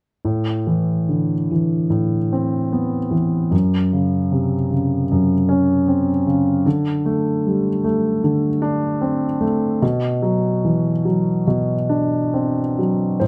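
Unfolding in a loose, rubato 4/4, this intimate, reflective neoclassical minimalist fragment features a solo concert grand piano, up front with deep bass, long sustain and audible action noise, moving from Amadd9 through F#5 and D5 to Bm under light reverb, captured by close, detailed microphones.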